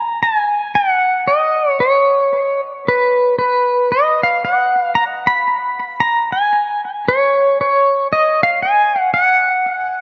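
Lightly swung eighth notes in 4/4 carry this relaxed, sunny Hawaiian excerpt, cut from a longer piece. An electric pedal steel guitar plays solo from 0.0 to 10.0 seconds in its upper register, sitting up front with a clean, twangy, compressed tone, fingerpicked attack, slide and volume swells. Analog delay on the steel and a moderate plate reverb give the mix a heavily echoing, spacious sound.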